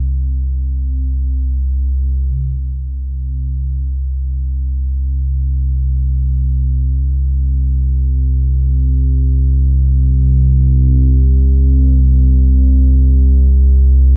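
Cavernous and unsettling, this dark ambient drone in free time, cut from a longer piece, rests on a single deep rumbling drone playing solo through all 14.2 seconds: an ominous, detuned, wave-folded blend of triangle and sawtooth tones between C2 and C3 with a slow attack, long sustain and lengthy release, sitting up front with its own built-in reverb in a light room and colored by the worn, warbling pitch drift of old cassette tape, with a new section beginning at 2.3 seconds.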